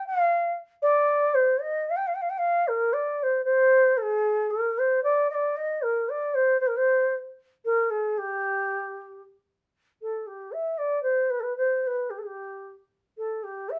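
A pure, bamboo-toned bansuri plays alone through this festive, warm Persian excerpt in a straight 6/8, its tongued, expressive lines carrying gentle vibrato up front in light reverb before the melody shifts from dastgah shur to dastgah mahur at 9.8 seconds and runs on to 13.8 seconds.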